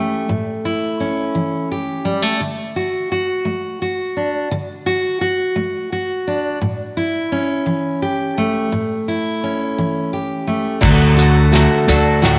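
A moderate echo-chamber reverb surrounds this hopeful indie folk excerpt in 6/8 at 57 BPM in A mixolydian, where a full-bodied, fingerpicked steel-string acoustic guitar with audible finger squeak plays alone, moving between A and D, until a shimmering, octave-doubled twelve-string acoustic guitar, a woody pizzicato upright bass and a soft-mallet drum kit with a boomy kick and dark cymbals join at 10.8 seconds for a build-up and drum fill that runs to 12.4 seconds.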